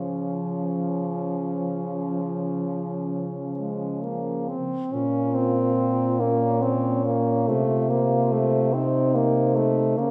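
An up-front mellow French horn with light vibrato carries the accompaniment in this serene, lyrical classical excerpt for horn quartet in a rubato 12/8, joined by a dark, up-front horn on the bass and, further back, a second-line horn with vibrato and a warm horn singing the melody, all four sounding together in a reverberant recital hall as the harmony turns to minor at 4.9 seconds.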